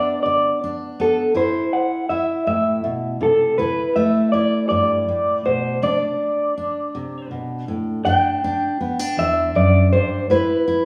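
Hopeful and anthemic, this short folk piece is cut from a longer work and moves at a slow 54 BPM in a straight 6/8, in G major. An electric guitar played through a small old amp carries the melody in a high register, its tone slightly broken-up, lo-fi and compressed, with a shimmering harmonic tremolo. Beneath it, a fingerpicked steel-string jumbo acoustic guitar supplies a full-bodied accompaniment reaching down to the low strings, with audible finger squeak adding intimacy. Both guitars sit up front and play together throughout, their sound blending the ambience of a small room where the band plays live with a lush, wet studio reverb. The harmony drifts through open, suspended colours such as Amadd9, Dsus2 and Csus2, then shifts into a new passage at 8.1 s that settles on G5 before closing on Asus2.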